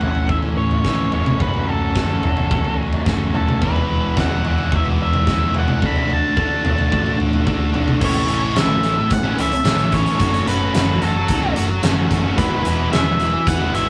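Cathartic and restless, this quiet-loud alternative rock excerpt drives in straight 4/4, with a big rock drum kit up front, its fat snare and punchy kick over a rolled-off top. A thick, bright fuzz guitar riff sits beside it and a dark octave-fuzz lead guitar carries the melody, over a growly overdriven picked electric bass, while a very quiet, twangy twelve-string electric guitar plays clean arpeggios until 8.0 seconds. A high-gain distorted guitar joins the riffing in the background at 3.6 seconds, and a mellow, round tonewheel organ with key click and slow rotary sustains soft chords from 8.0 seconds, all in a rough, booth-like rehearsal-room sound.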